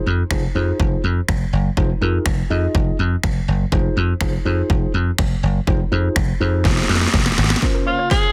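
A dense, heavily limited modern master with digital ambience frames this energetic, bittersweet dance-pop clip at 123 BPM, built on Fm7 and moving to Bbmadd9 at 7.6 seconds. A mellow tine electric piano and a dry, foam-muted thumbed slap bass, both pumping against the sidechain, ride over a punchy house kit with finger snaps, a cracking, softly clipped snare and drum fills leading into the change. In the final moments a very quiet, detuned unison pluck arpeggiates, an airy breathy pad with chorus and phaser sits in the background, and a bright alto saxophone with light vibrato enters up front at 7.9 seconds.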